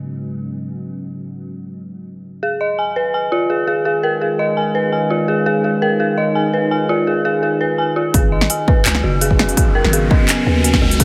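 Half-time drum and bass at 168 BPM in G# dorian, this dark, tense excerpt cut from a longer piece opens on a deep, moody ambient pad holding sustained chords, its detuned sawtooth body and sub octave softened by chorus, built-in reverb and sidechain pumping while a filter sweep runs across it until 8.1 seconds. At 2.4 seconds, as the harmony moves from G#m to C#, an eerie, inharmonic FM bell enters up front with chorused arpeggios trailed by dub echo. At 8.1 seconds the chords return to G#m and the build-up begins: a heavy, tape-warm electronic kick arrives alongside a layered kit of cracking snare, crisp hats and handclaps, both set in a small room ambience. A growling, buzzy 808-style bass with a fast attack and decaying tail enters at the same moment, low in the register. From 9.2 seconds an electronic riser climbs beneath the mix, and light digital reverb frames the whole sound.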